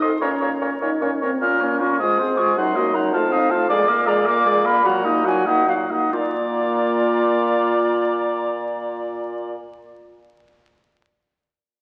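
Crackling like a very old 78 rpm record and bathed in a wet recital-hall reverb, this quick, restless and dramatic classical-period wind quintet movement in 6/8 at 88-108 BPM moves with a rubato feel and slows between 3.1 and 6.1 seconds, as a hollow, crisp-attacked silver flute with vibrato carries the melody over a distant, roomy oboe second line, while a smooth-topped French horn, a mellow clarinet and a punchy, vintage bassoon bass fill in beneath chords that shift from Bb minor and eventually settle on Bb.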